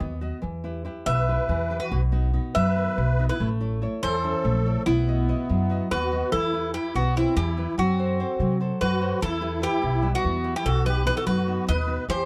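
Greek folk in a tense, intense bouzouki-band style, set in 7/8 at 288 BPM counted in eighths, in E harmonic minor and speeding up across this 12.3-second fragment of a longer piece. A fingerpicked nylon-string guitar with a deep classical tone and a growly, woody pizzicato upright bass set the Em, B and A changes from the start. A metallic, double-strung Greek bouzouki carrying the melody up front and a reedy, shimmering musette accordion on a second line both join at 1.1 s, and the harmony turns toward F#dim after 6.3 s in a dark production with a small-room ambience.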